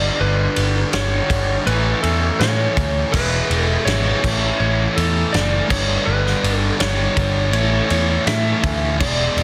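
A dense, heavily limited mix with light reverb and a small-room ambience frames this bittersweet, restless quiet-loud alternative rock excerpt at 82 BPM in a straight 4/4, moving through G, A and E chords. A twangy, slightly broken-up lead guitar carries the melody over a bright, compressed fuzz guitar riff and a growly, up-front picked electric bass. A loose indie drum kit with a punchy, softly clipped kick and rolled-off top joins at 0.6 seconds, and a thick fuzz guitar adds a second riff in the background from 3.1 seconds.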